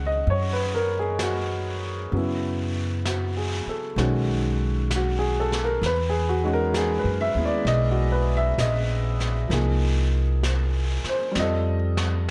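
A boxy upright piano with audible action noise and long sustain opens this melancholic jazz ballad fragment, cut from a longer piece, alongside a woody pizzicato upright bass, both sitting up front at a slow, swung 65 BPM through Ebm7, Gb7sus4 and B69. A distant, roomy brush kit with vintage 12-bit grit and a rolled-off top joins at 0.3 seconds and plays a fill from 11.3 seconds, all within an intimate space of light reverb.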